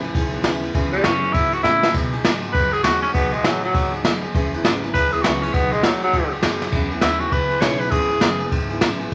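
A moderate large-studio reverb and a layer of vinyl crackle give this short rockabilly excerpt a retro, upbeat sheen, moving at 201 BPM in 4/4 with a swung eighth-note feel in E major. Up front, a jazz kit played with brushes sounds dark and smooth, with dusky cymbals, a medium-tuned snare and a boomy kick, adding fills around 1.6 seconds and again at 6.6. A bright, full-bodied picked steel-string acoustic guitar plays the accompaniment, shifting between E6 and B6 chords, while a woody, thumpy upright bass with gut strings sits in the background, plucked throughout. A raspy, gritty tenor saxophone enters at 0.9 seconds, carrying the melody with a punchy, vintage pop style. At 6.7 seconds the piece moves into a new section where the saxophone takes a solo through to the cut at 9.1 seconds.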